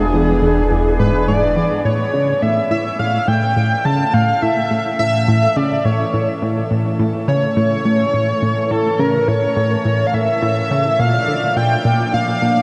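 A shimmering, retro pulse-width lead carries the melody up front in this hypnotic, expansive stretch of ambient, sequencer-driven space music, riding a tight, driving sequenced-synth riff, while a swirling phased analog pad fades in from 1.9 s to 12.6 s, a round analog bass sounds only until 1.8 s, and an airy, wind-like tuned noise texture sits very quietly beneath, inside a huge, dark reverb wash.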